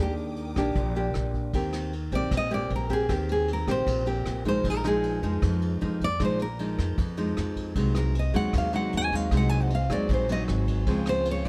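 A straight 4/4 bossa nova pulse at 154 BPM drives this short, romantic and relaxed clip in a dark, dry production, with a vintage brush drum kit entering at 0.2 s on hi-hat, tight kick, ride and rim click, its muffled top and pumping small-room sound sitting under a woody, pizzicato upright bass. Two up-front, fingerpicked classical nylon-string guitars carry the tune: one plays a bright melody with audible finger squeak, while the other plays a warm accompaniment through changes from Ebmaj7 and Eb6 to Bb7sus4, Ab7/C and a closing Dbmaj7. A lush, bowed violin section with vibrato and a smooth, focused top adds sustained chords in the background for the first 1.5 seconds and again from 7.7 seconds.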